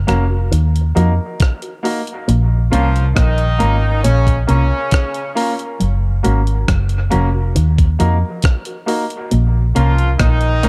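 A dark, lightly reverberant mix carries this meditative, hypnotic dub reggae piece: a round, foam-muted vintage electric bass sits up front beside a gritty, pitched-up breakbeat sampler-style drum kit with a thumpy kick, hi-hat and rim click, while a twangy envelope-filtered electric guitar riff sits in the background and present baby grand piano stabs both trail dub echo, and a distant, roomy horn section with light vibrato and octave doubling enters at 2.7 seconds on an echoing second line.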